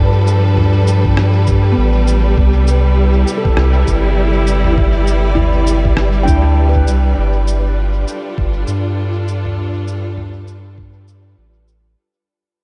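A swung sixteenth-note feel at 100 BPM in 4/4 drives this hazy, spacious ambient dub passage, cut from a longer piece in G mixolydian and tuned to A4 = 439 Hz. A round, deep sine sub bass sits up front from the start. Above it, a bowed studio string ensemble holds smooth, focused chords with vibrato as the harmony moves from G9 to Cmaj9 and back. A tape-warm, lo-fi sampler-style kit of cabasa, rim click and toms trailed by dub echo enters first, soon joined by a compressed, pitched-down electronic kick that gives a muffled thump. From 1.7 seconds a mellow handpan of nitrided steel, played with soft fingertips, rings out meditative arpeggios through tape echo in the background until 8.0 seconds, while light reverb and digital ambience surround the sound and the music fades out from 7.2 seconds.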